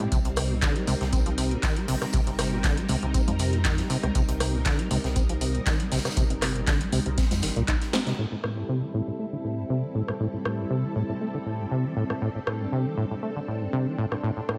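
A squelchy, resonant sawtooth acid bass sits up front, its fast-attack filter plucks decaying through a riff with sidechain pumping and delay. This raw, driving acid house cut from a longer piece runs at 119 BPM in 4/4 with a light 16th-note swing, in A minor pentatonic. Beneath it, a lush, vintage string machine holds sustained chords, thickened by a sub octave, phaser and ensemble chorus, moving from Cm7 to Am7 when the second section arrives. An electronic analog kick and a round sine sub bass anchor the first half; both drop out at 7.8 seconds. An analog drum machine with a punchy snare, metallic hats, handclaps, rim clicks and congas plays throughout, and a big-room acoustic kit of hi-hat, snare and tambourine sits in the background. A drum fill and band accent at 7.9 seconds lead into the second section, where a filter sweep on the strings begins at 8.2 seconds, all in light, small-room reverb.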